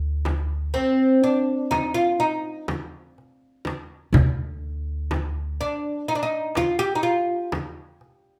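A straight 10/8 groove drives this short, hypnotic and longing cut from a longer Arabic maqam ensemble piece. A thumpy, gut-strung upright bass sits up front from the start until about 5.6 s, while a crisp metal-shell darbuka and a deep, dry frame drum struck with hard hands join almost at once. At 0.7 s the fretless, plectrum-plucked oud enters, its woody double strings carrying the melody well forward in the mix, with the band playing live together in one studio room.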